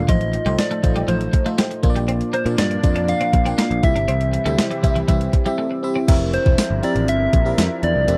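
A clean 12-bit drum machine sits up front in this nostalgic, glossy 1980s-style pop excerpt, its thumpy kick, medium-tuned snare, hi-hat, tambourine and crash cymbal given an overdriven, sampler-style edge and re-recorded in a small room. Underneath, an overdriven picked electric bass adds a growly, punchy low end at a straight 120 BPM in 4/4, while a glassy FM electric piano with a bell-like attack fills out the accompaniment through chorus and phaser. A soft struck synth lead carries the melody with a round, gently warbling vintage tone, vibrato and slapback echo, and a thick, detuned unison pad holds sustained chords in the background. A bright, twangy twelve-string electric guitar plays a compressed riff with ensemble chorus until 6.0 s, dropping out during a short break that gives way to a new section at 6.1 s. The harmony moves from F7/A through Bb and C before landing on C7, all captured in a dry, close studio sound.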